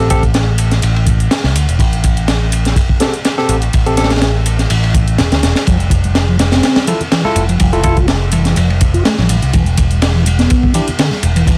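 A dry, close sound with vinyl crackle running underneath sets the scene for this short, swaggering breakbeat cut at 124 BPM in A minor, swung lightly on the sixteenths. From the start, a crunchy acoustic breakbeat kit sits up front, its punchy kick, high-tuned snare and dark ride cymbal saturated and rolled off on top, with a faint electronic hi-hat layered in from a larger room. A picked electric bass with an envelope filter drives the low end, bright and punchy through tube saturation, while a worn, slightly out-of-tune tine electric piano plays overdriven stabs through delay until about 10.9 seconds. At 5.7 seconds, as the harmony moves from Am to Fmaj7, a mellow, flute-like tonewheel organ enters with a riff, its chorus vibrato, key click and fast rotary speaker roughened by 12-bit sampler grit. Very quiet congas and bongos arrive at the same moment, and the excerpt closes on an E7(no3) chord from 9.5 seconds.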